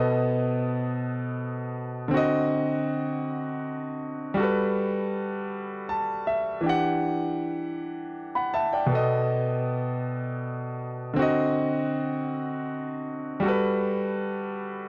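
A clear concert grand piano plays alone, up front, with a deep bass and long sustain, carrying a sultry, late-night R&B passage in a slow 6/8 at 53 BPM, tuned to A4 = 444 Hz. Its chords move through B7, D7b9, Gmaj9 and Em9 before circling back, with a short piano fill at 5.5 seconds. The natural tone sits in light reverb within a dry, close 1970s-style studio sound, in a brief passage cut from a longer piece.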